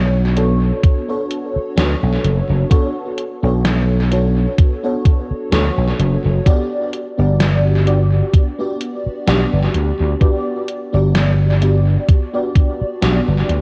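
Vaporwave at a slow 64 BPM in G lydian, nostalgic and faded, with a lightly swung sixteenth feel and a tuning a touch below standard, moving from Bm9 to Gmaj7 at 6.5 seconds in this short cut from a longer piece. An up-front FM electric piano layered with a soft pad carries the chords in a lush, dreamy tone thickened by phaser, analog chorus and tape echo, while a punchy, amped vintage slap bass sits beneath it. A thumpy, tape-colored electronic kick joins at 0.8 seconds, and a gated 80s digital drum machine adds hi-hat and a gated-reverb snare from 0.4 seconds, all set in an echo-heavy cassette mix with light digital ambience.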